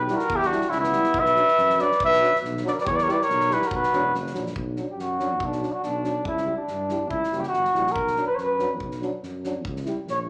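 A mellow trumpet carries the melody up front from the first moment, alongside a distant, roomy flugelhorn on the second line and a tuba bass, over a loose acoustic drum kit with a punchy kick and medium-tuned snare, all at a brisk 141 BPM in 2/4 with a light swing. This fiery, restless Balkan brass band excerpt in B harmonic minor sets a warm trombone and a background euphonium in accompaniment, several horns touched with light vibrato in a classical style and placed in a large studio reverb. The trumpet drops out at 4.2 seconds, and the flugelhorn takes a solo from 4.6 seconds as the harmony turns between Bm and C#dim.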